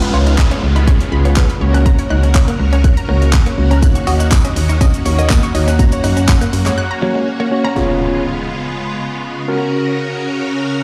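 Punchy, up-front pop drums and a round, dark FM bass drive this euphoric, summery dance-pop clip at 122 BPM in F# major, where a mellow tine electric piano, shimmering string-machine violins and a detuned unison pluck with tape echo all pump under sidechain, a bright clean guitar riff glints in the background, a very quiet jingly tambourine joins at 3.8 seconds, and after a break at 6.8 seconds an impact lands at 7.8 seconds as keys and strings carry on under large studio reverb.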